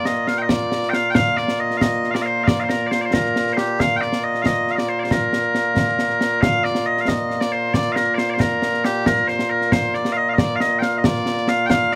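Loud, piercing bagpipes carry the melody from the very start, their bright, continuous tone sitting up front with a touch of slapback echo as they range from Bb2 up to G5. This is proud, ceremonial Scottish pipe music in 6/8 at 91 BPM in Bb major, with concert snare and bass drum entering at 0.1 seconds, close and acoustic with bright cymbals. Recorded outdoors with little reverb, this short cut from a longer piece plays the same opening section twice, repeating at 6.4 seconds.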